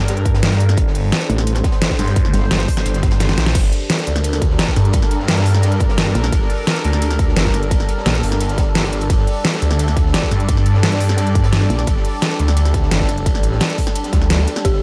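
A metallic, distorted wobble bass bursts in around 1.3 s and again at 6.2 s over a swirling, overdriven saw bass with phaser and sidechain pumping, driving this aggressive, dark stretch of technical drum and bass. A punchy electronic kick and a dubstep kit with deep snare and crisp hats sit up front, with a brief drum fill, while a gritty breakbeat kit murmurs far beneath. A bright, evolving resonant pad pumps through sustained chords in digital ambience until a faint swell and a single eerie FM bell note close it out.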